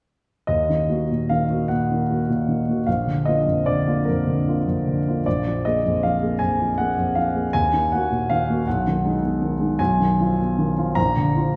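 In a 6/8 at 52 BPM, the dotted-quarter pulse stretches and bends with free rubato as a stormy, brooding romantic character piece for solo piano unfolds in Eb minor. The warm grand piano plays from 0.5 to 11.6 seconds across a span from Bb1 to Bb5, moving through Ebm and Bb before darkening through Abm/Cb and Fm7b5/Cb to land on Bb. Its intimate, natural tone carries long sustain and audible action noise close up, set inside a wet recital-hall reverb heard from farther back in a room with a softened top end, in this passage cut from a longer work.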